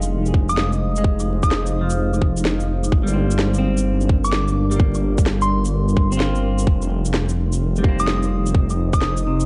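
A ghostly, wistful stretch of future garage cut from a longer piece opens with a clean, picked semi-hollow electric guitar, a deep, moody ambient pad and a rumbling, detuned saw bass all sounding together from the start, while a woody electronic snare and shaker tick along on a swung 16th-note feel. The bass sits up front, saturated and beating, and it pumps under the sidechain along with the guitar and the pad. The full-bodied pad hangs in the background with a slow attack, long release and chorus, coloured by a gritty vintage 12-bit sampler texture. A tight, tape-toned kick enters at 0.3 seconds, up front and re-recorded in a large room like the snare, and at 0.5 seconds a soft, pure FM bell adds a mellow high melody with chorus and analog delay, its notes decaying gently. The harmony drifts from Fm7 to Gm7 and then to F7(no3), and the whole recording carries light reverb, vinyl crackle and a dulled top end that adds to its ghostly, wistful mood.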